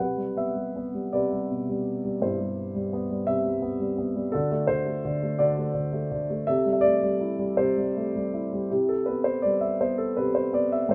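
Classical solo piano in a lyrical, tender vein, this peaceful excerpt unfolds in 6/8 with a flexible, rubato feel. A single concert grand carries everything, its deep bass and close, up-front presence softened by light reverb. The harmony drifts from Cmaj7 through D7 and C6 before settling back on Cmaj7 at 8.7 seconds as a new section begins.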